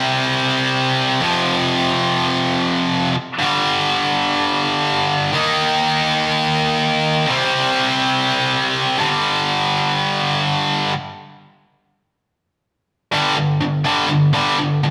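A tight, bright electric guitar, distorted, picked and double-tracked, plays alone up front in this swaggering, powerful rock excerpt, moving through C5, F5, G5 and Eb5 power chords over a range from F2 to Eb4. The chords break off at 11.2 s, then a G5 returns at 13.1 s to carry the fragment to its close at 14.9 s. A rough rehearsal-room sound with warm saturation sits in a wet stone room reverb, giving the guitar a heavy, echoing weight.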